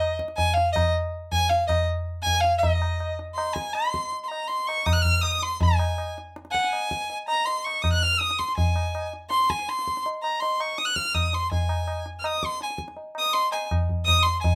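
A straight 4/4 pulse at 162 BPM gradually speeds up through this meditative, longing Hindustani classical passage, cut from a longer piece, with the music moving into a new section at 2.6 seconds. A single bowed violin carries the melody up front between Eb5 and Gb6, its rich, focused tone marked by vibrato and a smooth top. A low-tuned, ringing tabla plays throughout, close and dry, in a moderately reverberant studio room.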